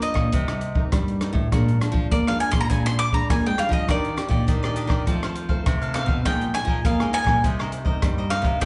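This lively, sunny samba and choro excerpt opens with a bowl-back mandolin carrying the melody up front, its picked double strings sounding round and carrying a slapback echo, over a straight 4/4 pulse at 102 BPM. Beneath it, one nylon-string guitar fingerpicks a bright, classical accompaniment with its own slapback echo, while a second nylon-string guitar supplies a mellow fingerpicked bass line. A compact cocktail drum kit keeps time on hi-hat, kick and rim click, its sound dark and smooth with a punchy kick and a rolled-off top, placed close to the listener. At 3.9 seconds a crisp, bright cavaquinho joins the accompaniment with slapback echo as the harmony moves from Cm7 and Bb7 to Ebmaj7, F7 and Bb7sus4 before returning to Cm7. The whole performance sounds like a live gig heard through a venue's PA, wrapped in club reverb, with a dull top end.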